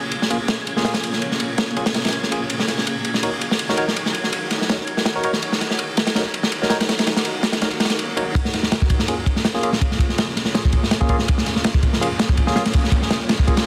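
Drum and bass in a jungle vein, this dark, atmospheric fragment of a longer piece sets a gritty, up-front breakbeat kit with dark cymbals and a rolled-off top against a blurred, detuned granular cloud pad on Bbm7 and Ebm7 chords, while barky, bright tine electric piano stabs pass through 12-bit grit and dub echo, an airy wind-like noise texture breathes in the background until 8.4 seconds, and a very quiet electronic swell and riser entering at 8 seconds joins a filter sweep on the electric piano from 8.4 seconds to drive a build-up, all under vinyl crackle.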